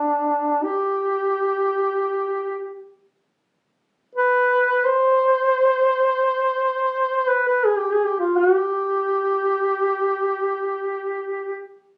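Captured on a phone in a room, then given light studio reverb and compression, this short fragment of Caucasian folk music in G major, tuned to A4 = 442 Hz, has a roomy, distant air even though the lone duduk sits up front. The dark-toned duduk plays solo in free time from 0.0 to 11.6 seconds, moving between D4 and C5 with vibrato and scooped notes in a folk style. The mood is solemn and full of longing.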